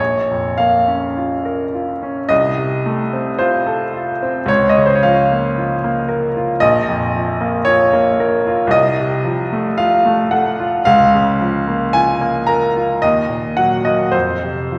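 A romantic classical nocturne for solo piano in Bb minor, this short passage is cut from a longer piece and carries a yearning, mournful mood. It moves slowly, around 50 to 58 BPM in 4/4, with a rubato feel that lets the time breathe. A clear baby grand piano plays alone for the full 14.8 seconds, ranging from Bb1 up to Bb5, and its tone is natural and intimate, sitting up front with the mechanical noise of its action audible. The harmony circles between Bbm, F7/C and Bbm/Db before reaching Ebm at 13.0 seconds and settling on an open F5 at 14.1 seconds. The instrument is heard in a church or concert hall setting, wrapped in a generous reverb with a 1.5-second decay that adds a sense of space around the close, detailed sound.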